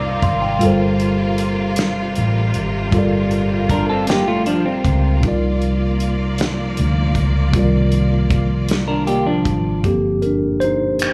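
A worn, slightly out-of-tune tine electric piano opens with a brief fill over lush, bowed studio strings and a dark, round, foam-muted fingered bass in this slow, late-night, yearning six-eight R&B excerpt in G minor at 52 BPM, as a soul drum kit of finger snaps, hi-hat, tight kick and snare settles in from 0.2 seconds, a clean hollow-body electric guitar adds a short second line from 3.7 seconds, and the strings stop at 9.8 seconds while the electric piano takes a solo over Gm11 harmony in a small, lightly reverberant room.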